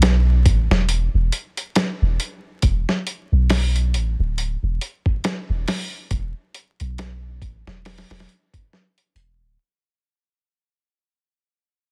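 A gritty, compressed sampler-style soul drum kit with a thumpy kick, medium-tuned snare and hi-hat sits up front beside a deep, round, sine-like 808-style bass that decays darkly in the low register, giving this hypnotic, smoky trip hop excerpt at 69 BPM its swung 16th-note sway, while the dry, dense, heavily limited master carries vinyl crackle and fades out from 0.3 to 9.6 seconds.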